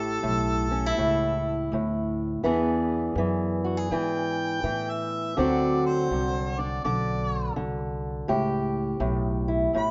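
Harmonica, fingerpicked steel-string acoustic guitar and upright bass all sound together from the start of this swaggering, gritty acoustic country blues, swung at a relaxed walk over A7, E7 and D7. The harmonica carries a jazz-inflected solo melody with light vibrato and scooped notes, sounding distant and roomy under a slapback echo. The boxy parlour guitar sits up front with audible finger squeak, and the woody, growly pizzicato bass anchors the low end, all in a home demo mix with moderate plate reverb that is rough and dull at the top.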